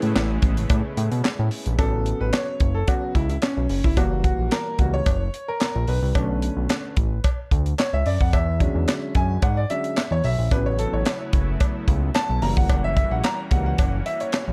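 A straight, danceable groove in 4/4 drives this smooth early-eighties boogie funk section, cut from a longer piece. The up-front, dry acoustic kit sets it up with a tight kick, a high-tuned snare, hi-hat and handclaps, while a metallic cowbell, recorded in a small room, sits in the background. A fat, saturated analog bass, built from detuned sawtooth and square waves with a plucky filter, holds the low end up front. A boxy, intimate grand piano with long sustain and audible action noise plays throughout, moving from accompaniment into a solo at 1.8 seconds over rich extended chords. A lush, warbling vintage pad of detuned unison sawtooths, bright and chorused, swells softly in the background at the opening and returns at 10.5 seconds. The whole production feels dark and warm.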